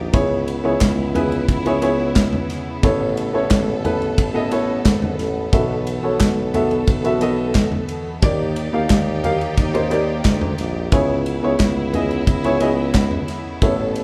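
Hopeful and gently warm, this piano-driven pop excerpt moves at 89 BPM in a straight 4/4, cut from a longer piece. A dark, woody upright piano sits up front with short sustain, carrying the accompaniment through a progression of C#m7, Aadd9, B7sus4 and D#maj7 before returning to C#m7. Beneath it, a punchy tuba with light vibrato supplies the bass line, while a bowed string section holds soft-attacked, intimate sustained chords played sul tasto. The acoustic drum kit enters at 0.1 seconds, also up front, with a tight kick, a medium-tuned snare, ride cymbal, toms and handclaps, all rolled off on top for a smooth, small-room sound. A very quiet group handclap adds a crisp, human touch from 0.8 to 13.1 seconds, and light reverb gives the whole a feel of a band playing live in one room.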